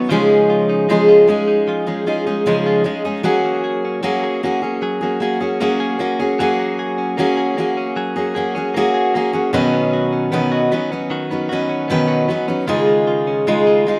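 A fingerpicked steel-string acoustic guitar and a clean electric guitar start together at once, setting an easy-going, carefree pop mood in F# major at a relaxed 76 BPM in straight 4/4. The acoustic guitar carries the accompaniment up front, its jumbo body giving a full, fresh-stringed tone with a touch of slapback echo. Sitting quieter in the mix, the electric guitar is recorded direct and plays picked arpeggios, its compressed, clean sound also carrying a slapback echo. The harmony moves through add9 chords, from C#add9 to F#add9, then to Badd9 and back to C#add9 near 12.7 seconds. The sound is dry and open-air, with little reverb, and this 14-second excerpt is taken from a longer piece.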